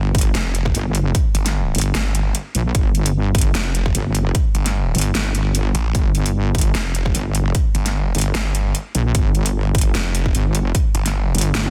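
A heavy, saturated wobble bass opens this aggressive, menacing heavy wobble dubstep excerpt. It sits up front from the very start, its detuned sawtooth and sine tone thickened by chorus and overdrive and held low between G1 and Bb1. A snarling distorted saw bass joins at 0.3 seconds, growling between F1 and A1 with a moving notch and biting distortion. Underneath, a punchy electronic kick re-recorded in a large room and a layered dubstep kit drive a half-time 150 BPM groove in 4/4 with a 55% swing on the 16ths. The kit brings a huge snare, metallic hi-hats and toms, given a tape-warm edge and a touch of studio reverb, and a drum fill arrives at 11.5 seconds. Set in G minor with A4 tuned to 445 Hz, the dense, heavily limited modern master keeps the overall space dry and crushing.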